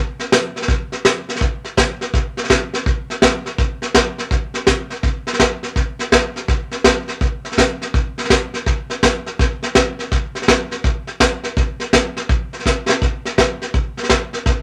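A swung eighth-note feel at 165 BPM in 4/4 drives this rock fragment, giving it a retro, rollicking bounce. A vintage kit played with brushes carries the whole track, coming in at 0.2 s with hi-hat, a medium-tuned snare and a tight kick. The acoustic drums sit up front in a small room, their rolled-off top lending a warm, vintage character, and a light reverb adds a touch of space. After a brief opening, the main groove settles in at 1.4 s and continues from there. A short drum fill at 12.7 s breaks the pattern before the kit carries on to the close of this cut from a longer piece.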